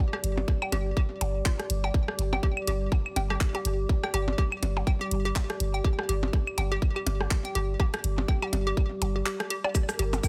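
Minimal techno at 123 BPM with a swung 16th-note feel, sparse and hypnotic, tuned slightly flat of concert pitch, this excerpt from a longer piece opens on a dark, warbling, tape-like pad that pumps under a hollow, bouncy square-wave pluck riff carrying chorus and delay. A tight, up-front electronic kick arrives at 0.5 seconds over a deep, punchy sine sub bass on G1, a garage kit of cabasa, handclaps and warm hi-hats, and overdriven rim clicks, blips and claves fed through digital delay. At 10.0 seconds a resonant, bubbling sawtooth texture with stepped filter movement slips in quietly in the background, all within a light reverb.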